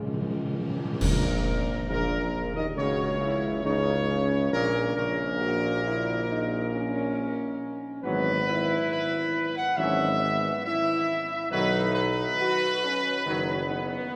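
A classical ceremonial fanfare at a stately 69 BPM, solemn and triumphant, cut from a longer piece and bathed in a wet cathedral reverb. A timpani fill with hard mallets on calf heads opens the passage, and at 1.0 s a band accent lands with bright clash cymbals and concert bass drum, close and dry, both percussion parts falling silent by 2.7 s. Up front, a soft-attacked trumpet section with light vibrato carries the melody, while a mellow French horn section and a background trombone section sustain chords over a distant, roomy tuba bass, the harmony moving from A#madd11 to Eadd9/G# at 8.0 s and then to B at 11.5 s.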